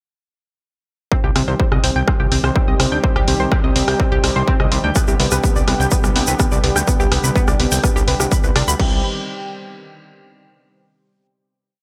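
A distorted, up-front four-on-the-floor kick drives this hypnotic melodic techno piece from 1.1 s, under a fat, detuned bass rolling in sixteenths, a round, chorused pluck arpeggio with digital delay, a lush, warbling unison pad in the background and a very quiet, nasal drone entering at 2.7 s, while a drum kit adds hats, rim backbeat and crash in gated reverb, with pad, pluck, bass, hats and cymbals all sidechain-pumping, a grainy hand-played egg shaker joins at 5.0 s as the chords move from Cm to G/C, and the bright 1980s-style digital sound settles on a final Cm chord at 8.8 s.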